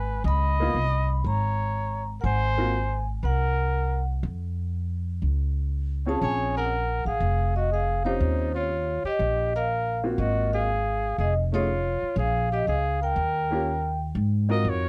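An up-front upright bass, plucked with a woody tone on steel strings, anchors this swinging jazz excerpt cut from a longer piece. A vibraphone carries the melody with medium mallets and the motor off, its metallic, ringing notes set in a boxy small room and touched by plate reverb. A breathy, close-miked trumpet adds a second line with vibrato, sitting a little beneath the vibes in level. An upright piano, slightly detuned and vintage in character, comps from 0.6 seconds, drops out at 2.7 seconds and returns at 6.1 seconds. The harmony moves through extended and suspended chords, with a brief stretch where the chords fall away, all within a dark, warm production with light reverb.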